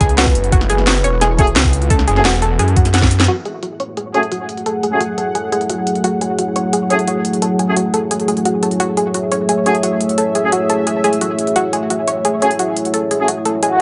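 Mechanical and futuristic, this dark technical drum and bass excerpt runs at 174 BPM in F# minor, opening on a knocking electronic kick, cracking snare and crisp, filtered hats beneath a thick, swirling phased saw bass; the kick falls away at 3.1 seconds and the bass at 3.3, around a drum fill and band accent near 3.2 seconds. A round analog pluck spins chorused, tape-echoed arpeggios that pump against the beat and take a filter sweep from 3.3 seconds, while a moody, warbling ambient pad sits deep underneath and a clear brass ensemble adds tight, soft-attack stabs. An evolving, bright resonant pad swells in with sustained chords from 3.8 seconds, and a brief electronic swell arrives at the very end.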